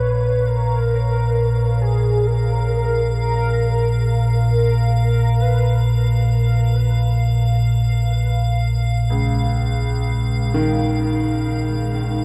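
A deep, ominous rumbling drone anchors this unsettling, cavernous dark ambient excerpt in free time and Bb phrygian. From the very start it sounds alongside a round, horn-like synth lead with chorus and vibrato that sings its melody only until 5.8 s. It is joined by an icy, crystalline glass pad from 0.2 s and a boxy grand piano whose arpeggios enter at 1.0 s and gradually fade in through diffuse delay. Everything is bathed in a huge, wet reverb over a Bbm chord.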